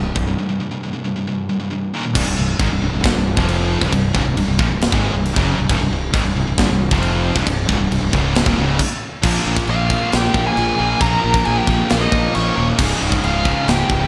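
A bright, high-gain guitar and a sludgy, overdriven guitar open this dark, epic heavy metal excerpt over a growly, punchy fuzz bass, joined almost at once by a tight, up-front drum kit of china, crash, kick and snare, while a double-tracked, very quiet cranked stack guitar adds to the riff from 2.1 seconds. After an early break and a brief stop near 9 seconds, a nasal lead guitar with a parked wah carries the melody from 9.7 seconds, with a distorted lead in the background playing a second line through slapback echo and delay. The mix has a big arena sound with recital hall reverb and small room ambience, and the cymbals glint.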